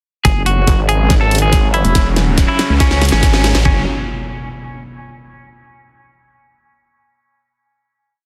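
This short, complete piece of heavy wobble dubstep at 141 BPM in a half-time 4/4 feel opens at 0.2 seconds with the guitar, pad, wobble bass and drums arriving together, carrying a menacing, chaotic mood over an F#5 chord. A clean, twangy electric guitar repeats a picked riff melody with tremolo and dub echo, while a lush supersaw pad sits in the background holding sustained chords through a phaser and sidechain pumping. Up front, a heavy, detuned wobble bass with chorus and overdrive plays modulated phrases with changing wobble speed, and from 0.7 to 1.8 seconds a snarling, growling distorted saw bass cuts in with chopped phrases. A knocking electronic kick and a dubstep kit with a huge snare and bright hats, both tape-tinged, drive a drum fill through the build-up, as a riser and impact enter in the background at 1.6 seconds and carry past the other parts into a final chord that rings until 5.4 seconds. 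The sound is dense and heavily limited, set in a digital ambience.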